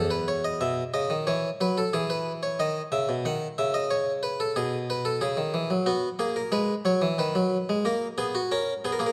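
A straight, even pulse in common time carries this brief baroque-style two-part invention, cut from a longer piece, with an elegant and stately bearing. A single harpsichord plays alone throughout, its plucked, brilliant tone sitting up front with a mid-forward voice from one set of strings in the French style. Its two lines span from the low E2 up to F#5, and the harmony moves from an opening C#m/E through E and B7 to a B5 at 5.9 seconds before closing on a rootless F# at 8.5 seconds. A moderate concert hall reverb gives the instrument a sense of space while keeping it close.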